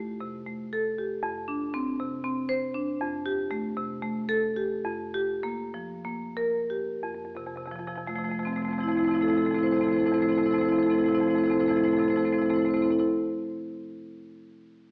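The rhythm moves in a flexible 7/8, counted in eighths at anywhere from 171 to 243 BPM, with a rubato feel and a gradual slowing between 2.1 and 7.0 seconds. This is a flowing, warm contemporary classical piece for solo marimba in F major, a short fragment taken from a longer work. Played with medium mallets, the marimba sits up front and sounds dark and smooth as it ranges from F2 to C5, moving through Fadd9, Dm7/F and Gm7/F before settling on Fmaj7 at 7.0 seconds, where a new section begins and runs to 11.6 seconds. A moderate recital-hall reverb surrounds the instrument, while the overall sound carries the narrow, filtered character of AM radio.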